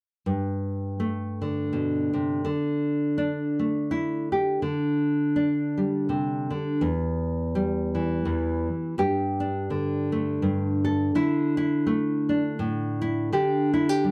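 A lone nylon-string guitar, warm, full-bodied and up front, opens this short, nostalgic and peaceful folk excerpt in an unhurried 83 BPM waltz-time swing, its fingerpicked deep classical tone moving through Gsus2, Dsus2, G5/D and Em before circling back at 9.0 seconds, all captured in a dry, close 1970s-style studio sound with light reverb.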